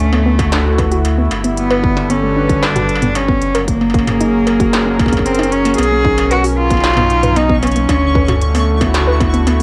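An intimate, up-front cello carries a nasal, airy-bowed melody with light vibrato over a smooth, warbling analog pad with chorus, a deep, round sub bass and an industrial drum kit of clanging snare, smooth hats, struck metal and toms, opening this playful, intricate IDM excerpt at 114 BPM. Soft, dark plucked arpeggios sit in the background, and a distorted electronic kick enters at 0.4 seconds, both kit and kick heard as if re-recorded in a large room, while the harmony moves through major-ninth and add-nine chords. At 5.8 seconds a bright, pulsing gated texture with reverb joins faintly, and the whole passage carries the tape coloring and light reverb of a home cassette recording.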